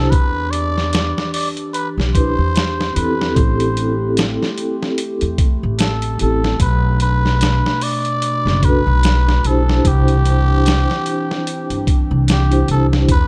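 Dark, smoky production frames this melancholic trip hop excerpt at 74 BPM with a swung 16th feel, where a veiled, raspy cup-muted trumpet carries the melody through tape echo over a soft-mallet vibraphone accompaniment with tremolo and 12-bit sampler grit, a warbling tape-like pad with chorus sits in the background, a woody pizzicato upright bass stands up front, and a compressed, dusty soul sampler-style kit with a thumpy kick and studio reverb joins at 0.1 seconds over the chords Em7, Am7, Bm7 and Cadd9.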